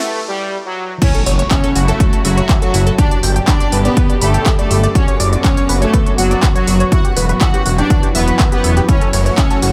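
Melodic techno at 122 BPM in F# phrygian, hypnotic and cinematic, this excerpt opens on a brief break where a bold, brassy analog synth lead sings over veiled, muted strings, a warbling lo-fi tape-like pad with chorus, phaser and reverb, and a very quiet electronic riser and impact. At 1.0 seconds the drop lands with an overdriven, up-front kick, a techno kit of smooth hats, handclaps, ride and crash, a tight, nasal sequenced arpeggio with digital delay, and a biting, clear violin section carrying a second line, joined at 1.3 seconds by a fat, detuned sawtooth bass. A faint evolving analog drone on F#2 enters at 2.6 seconds, while sidechain pumping breathes through the bass, strings, pad and lead as the chords move from F#m7 through G and Bmadd9/F# to Emadd9.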